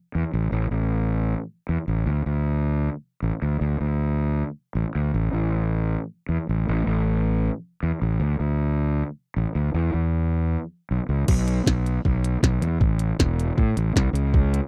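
A growly, fuzzed fingered electric bass opens this upbeat, jangly indie rock cut, carrying the low end on its own in a straight four until an electronic drum kit joins at 11.3 seconds. The kit is small and produced, with a soft kick, a tiny snare, clicky hi-hats and a crash cymbal, and it sits up front beside the overdriven bass. The sound is dry and close, in the manner of a 1970s studio recording.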